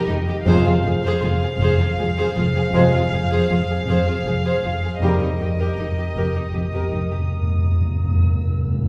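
Tense and uneasy, this short cinematic suspense cue moves at 79 BPM in 3/4 in F minor, cut from a longer piece and set in a wet recital hall heard from further back in the room. Chamber violin sections carry a sul tasto melody and second line with light vibrato, over a viola section accompaniment and bowed cellos playing both a riff and a bass line, with a double bass section holding a low F beneath. A mellow French horn section and a clear, vintage-tinged trombone section sustain chords until 5.3 s, while an ethereal glass harmonica with a slow attack and beating tone holds chords behind them. A delicate, tinkling music box adds high texture until 3.5 s, and a dark, woody, distant violin section returns at 5.0 s with high texture. Up front, round soft-mallet timpani strike early on and return with a fill from 5.0 s as the harmony moves from Fm to Eb/F.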